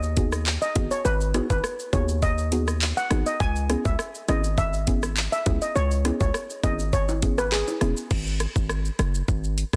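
Tough and bouncy, this dancehall fragment moves at 102 BPM in 4/4, with a punchy, heavy 808-style bass and an electronic drum kit of knocking kick, metallic hats, handclaps, rim clicks, shaker and crash sitting up front in a dense, heavily limited, dry mix. A shimmering steel pan carries the melody through tape echo, while a soft, round pluck with chorus adds dark, full-bodied chords over G#m7 and C#m7, and both drop out at 7.9 seconds. Bright, vintage tube shaker and timbales stay in the background until 8.1 seconds, when the harmony moves to F#sus2 and the bass and drums carry on to the end.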